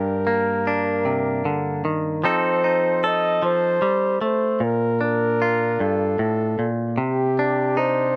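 Recorded outdoors with a light reverb, this brief, intimate and heartbroken folk fragment in a gentle 6/8 pairs a warm, close-miked flugelhorn, singing a pop-style melody with light vibrato and a slapback echo, with a bright, twangy, compressed electric guitar, recorded direct and picked up front, that accompanies it through Gm, F7, Bbmaj7 and Cmadd9.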